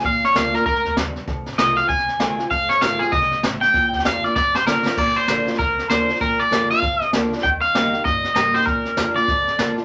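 A swinging 195 BPM shuffle in 4/4 drives this retro, rollicking rockabilly clip in Bb major, where a twangy, slightly broken-up electric guitar sits up front with a clean solo over the first 5.0 seconds, a boxy, picked ladder-braced acoustic guitar with old strings picks through the Bb, F7 and Eb changes, a thumpy gut-string upright bass lurks in the background, and a brush-played kit with a high-tuned snare, boomy kick and dark cymbals adds a fill just before the second section, all in a moderate club reverb.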